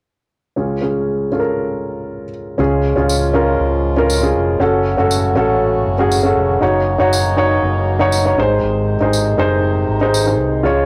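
Piano-driven pop with an uplifting, hopeful mood, this cut from a longer piece opens at 0.6 seconds with a dark, mellow baby grand playing accompaniment alone, its short sustain and audible action noise placing it up front and intimate under a plate reverb. At 2.6 seconds a fingered electric bass enters, round and punchy with an amped tone, alongside a French horn section holding soft-attack chords in classical style. The horns sit distant and roomy in the background, a warm ensemble cushion beneath the keys. A jingly tambourine joins at 3.1 seconds, compressed and saturated, adding warm acoustic shimmer to the straight, steady pulse. The whole take carries the character of a home cassette recording in a small room with a wet, short reverb.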